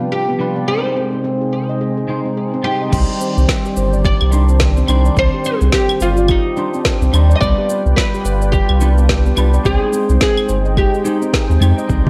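A worn, warbling cassette-tape sound with warbly pitch drift, light reverb and digital ambience wraps this hypnotic, mystical organic downtempo excerpt in C harmonic minor, moving at 107 BPM in 4/4 with a swung sixteenth-note feel. A mellow, woody oud carries the melody with delay over a bright, twangy clean electric guitar, a soft-attack sawtooth pad sitting in the background, and ringing handpan arpeggios, with guitar and pad both pumping from sidechain. At 2.9 seconds a round, deep analog bass, a layered electronic kick and a deep house kit with a woody snare, cabasa, claves and low-pass-filtered crash enter under chords moving from Cmadd9 to G7 and Abmaj7, and bright, up-front congas land at 12.1 seconds.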